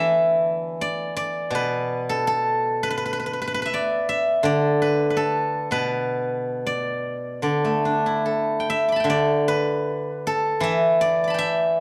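A dark, warm production places the performance in a recital hall with a moderate reverb that lingers for about 1.4 seconds. This is a fragment of a traditional Chinese piece for solo plucked strings, flowing and serene, in the D zhi mode. A steel-string zither, played with fingerpicks, carries the whole recording alone from 0.0 to 11.8 seconds, its bright, silvery tone sitting up front and ringing across a range from B2 to D6. The tempo drifts between 71 and 84 BPM in a free, rubato 4/4, giving the line an unhurried, breathing quality. A new section begins at 9.1 seconds and carries the music to the cut at 11.8 seconds.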